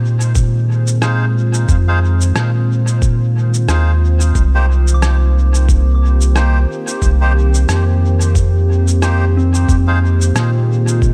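A swung sixteenth-note groove in 4/4 from a thumpy, muffled, pitched-down overdriven kick and a compressed electronic shaker and rim click soaked in dub echo carries this hazy, meditative ambient dub passage, where a round, up-front sine sub bass sits under a warbling, lo-fi tape-like pad that fades in with detuned sustained chords moving from Fm7 to Cm7 and back, while reedy, breathy melodica stabs filtered through a low-pass and dub echo appear at 1.0 seconds and a soft, pure FM synth bell adds gentle background arpeggios with tape echo from 4.9 seconds.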